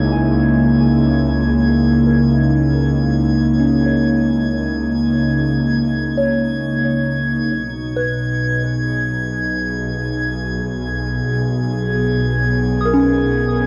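A smooth, up-front sawtooth pad holds sustained chords through a filter sweep, moving from C#m69 to B6 at 7.5 seconds, in this serene, melancholic ambient piece cut from a longer work. A soft FM bell fades in with mellow, decaying arpeggios carried on tape echo and chorus, while a bowed double bass section plays focused low notes with vibrato. High above, a glassy sine texture of drifting overtones also fades in, and the whole home cassette recording sits in a wet studio reverb.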